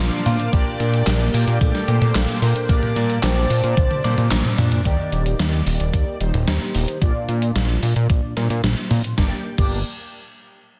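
A fat, thick analog bass sits up front in this moody, driving synthwave cut from a longer piece, its detuned sawtooth tone evolving under tube saturation and sidechain pumping at 111 BPM in G minor. A thumpy electronic kick and an up-front 80s digital drum machine, with gated-reverb snare, handclaps, hi-hat, toms and crash, carry a tape-tinged, large-room character. For roughly the first 4.8 seconds, a soft, round, octave-layered synth lead carries the melody with chorus, phaser, tape echo and vibrato, while a bright, clean electric guitar picks arpeggios through spring reverb and delay, and a silky analog string pad holds chords in the background. A drum fill and a band accent close that opening, after which the harmony moves from Bb to Ebmaj7 and a filter sweep colors the middle stretch. Mellow, brassy synth stabs with a dark, detuned edge run throughout, and the string pad returns briefly at 9.2 seconds as the chord settles on Gm. 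The dense, heavily limited master adds light digital ambience.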